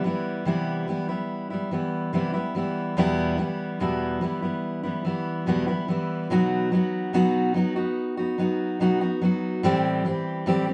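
A straight 4/4 pulse at 72 BPM carries this heartbroken, emotional pop fragment in E minor, played by a single fingerpicked steel-string acoustic guitar that sits up front with a warm dreadnought body across a range from E2 to G4. The chords move from Cmaj7 to Em to B, then shift to Am7 at 9.6 s as a new section begins, just before the fragment ends at 10.7 s. A moderate studio reverb gives the feel of a live performance in one room.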